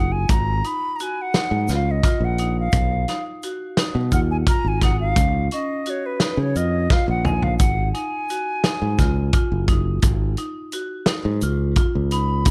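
An intricate, brooding progressive instrumental in 7/8 at 172 BPM opens in G# dorian with a pure, straight-toned concert flute soloing over hard-mallet marimba arpeggios with plate reverb and a bright, growly fingered electric bass, joined at 0.3 seconds by a gritty, punchy indie drum kit and a very quiet grainy tube shaker, the flute's crisp attack trailing plate reverb and tape echo across the dark production while the drums fill between 6.9 and 7.6 seconds in this cut from a longer piece.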